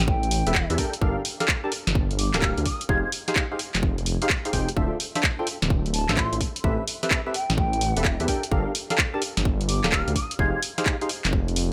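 Late-night and bouncy, this cut from a longer two-step UK garage track swings over a rumbling, detuned sawtooth bass and a punchy analog drum machine of handclaps, hi-hat and snare, anchored by a tight, tape-warm electronic kick. Hollow, percussive organ stabs with chorus and tape echo trace a minor-seventh progression moving from Am7 through Gm7, Fm7 and Dm7. An airy, distant concert flute with vibrato and tape echo floats above in two phrases, from 0.0 to 3.1 seconds and again from 5.9 to 10.6 seconds, all set in a digital ambience.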